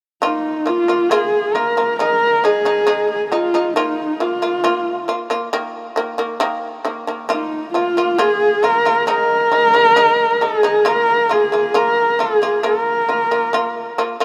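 A huge ambient reverb with a decay of about 4.3 seconds surrounds this vast, windswept Mongolian traditional excerpt, cut from a longer piece and moving at a slow 68 BPM in straight 4/4. A single bowed horsehead fiddle carries the melody up front, its husky, woody horsehair tone colored by vibrato and portamento. A bright, buzzing, plectrum-plucked fretless shamisen plays percussive arpeggios a little lower in the mix over harmony that circles between Bb5, Ab5 and Eb5 from 0.2 to 14.2 seconds.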